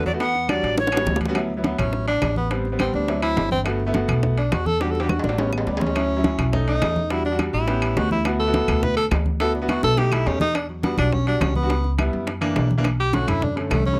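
A sunny, lively Afro-Cuban jazz excerpt at 209 BPM in D major opens with an airy, chiffy alto recorder melody over tenor saxophone, a brilliant baby grand piano with audible action noise, and a woody, thumpy pizzicato upright bass; the recorder stops at 1.2 seconds. From 1.4 seconds the up-front tenor saxophone takes a smooth-topped solo with light vibrato, while round bongos, low-tuned congas, ringing metal-shell timbales and background claves, all entering within the first half-second, fill out the percussion, punctuated by drum fills. Jazz harmonies such as Em9, D69 and F#7b13 pass by in a dry, close 1970s-style studio sound with light reverb.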